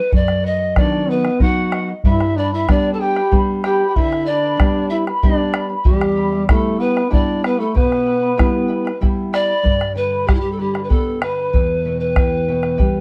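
Melancholic and wistful, this Andean folk piece in E minor moves at 95 BPM in an unhurried 3/4, taken from a longer work. An airy pan flute with a wooden, straight tone carries the melody up front, its tongued notes marked by a chiff, while a close, dry bombo thumps deep and dark beneath it. Fingerpicked nylon-string guitar supplies a deep classical bass and harmony, and the charango sits lower in the mix, its double strings, some doubled at the octave, adding a shimmering halo. From 0.8 s to 9.0 s a duduk joins as a second line in folk style, with vibrato and scooped notes. The harmony moves through B, G and E minor, shifting into a new passage at 9.6 s, all set in a moderate studio reverb with a dark, warm production.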